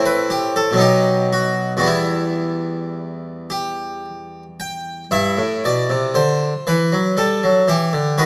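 This is a classical, baroque-style suite movement for solo harpsichord, cut from a longer piece and lasting about 8.3 seconds. It moves in a flowing, solemn 3/4 at roughly 54-61 BPM, with a rubato feel, in E minor and tuned to A4 = 444 Hz. The French-style harpsichord, with two sets of strings, sounds plucked, dry and full, close-miked and up front, spanning E2 to G5. Its harmony moves from Am to B and settles on Em by 1.9 seconds, and a second section begins at 5.1 seconds on Em/G. Detailed microphones catch the instrument within a moderate recital hall reverb that lingers for about 1.7 seconds.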